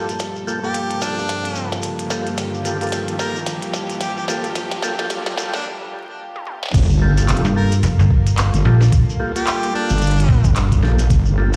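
Glitch hop at 110 BPM in G minor with a swaggering, playful swing, where soft-edged bowed strings with a grainy sampler crunch, pumping overdriven tonewheel organ stabs through a slow rotary speaker and tape echo, a warbling lo-fi pad, a grainy shekere and a clicky, tiny-snared glitch kit carry a build-up with drum fills and a background riser under a warm solo harmonica melody, until a break gives way at 6.7 s to a heavy drop led by a dark, saturated wobble bass and a thumpy pitched-down kick, joined at 7.4 s by a snappy, metallic FM slap bass, all set in a big, reverberant room with vinyl crackle.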